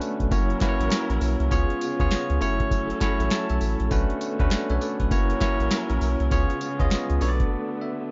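A dark production with digital ambience and nothing above 7.6 kHz frames this punchy, slick cut of new jack swing R&B at 100 BPM, swung on the sixteenths over chords such as F#7, C#7 and Bm9. An overdriven, booming analog drum machine sits up front with a deep kick, crisp snare, metallic hats and tambourine, joined by a round, sine-like bass from 0.2 seconds and a barely audible, hollow group handclap. A bell-like tine electric piano carries the accompaniment with fills at 2.7 and 7.5 seconds, while a lush, bowed string section with vibrato holds sustained chords in the background before a brief break at the close.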